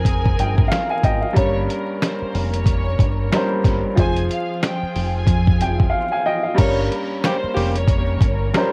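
A boom-bap hip-hop groove at 92 BPM in 4/4 swings its sixteenths, driven by a compressed, sampler-style soul drum kit with a thumpy kick, medium-tuned snare, hi-hat and crash sitting up front under a cassette-tape grit. Beneath it, a deep, round fingered electric bass in a dub vein punches out the low end, while a woody, vintage upright piano with short sustain carries the accompaniment through the same tape haze. A close, biting violin section bowed with light vibrato takes the melody, filtered and trailed by tape echo, as a veiled, con sordino string section holds distant sustained chords over Fmadd9, Gdim and Fm. After a break from 5.9 to 6.6 seconds, a jazz-style saxophone section drops in brief stabs between 7.2 and 7.8 seconds, touched by its own tape echo. The dark, gritty cut has the feel of a home cassette recording, with light reverb and vinyl crackle, and it comes from a longer piece.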